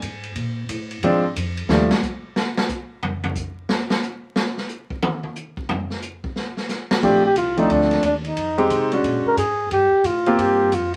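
A mellow, up-front flugelhorn with scooped notes carries the melody from 7.0 s in this playful, swinging small-group bop piece at 180 BPM, after a distant, roomy big-band drum kit with a boomy kick takes a solo from 1.7 s. A clear baby grand piano and a woody pizzicato upright bass, heard briefly at the opening, return at 7.0 s to accompany in Bb major, set in a moderate club ambience with vinyl crackle.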